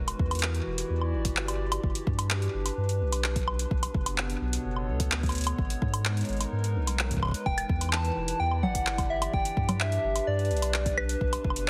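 A straight, steady pulse from an up-front analog drum machine, with metallic hats, congas, handclaps and woodblock trailed by delay, sits over a deep electronic kick, while a round sine sub bass anchors this eerie, cerebral IDM excerpt. A dark, warbling, lo-fi pad drifts through sustained chords from Em7 to G, Bm7 and G#m, with chorus and reverb adding a nostalgic haze. At 7.5 seconds a gentle, keys-like FM lead enters with bright, decaying notes, vibrato, chorus and delay, all within a heavily compressed, radio-like sound.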